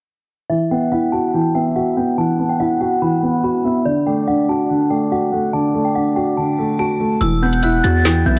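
A dark, close-sounding drill excerpt in E minor at 143 BPM with a half-time feel, cut from a longer piece and carrying a menacing, tense mood, opens on a worn, boxy grand piano with audible action noise under an inharmonic, ringing FM bell melody with chorus and delay, joined at 0.7 seconds by a breathy, flute-like synth lead with vibrato while a filter sweep runs through the opening section. At 7.2 seconds the harmony moves to Emadd9 as a heavy, saturated 808-style bass and an up-front drill kit with a woody snare and metallic hi-hats drop in.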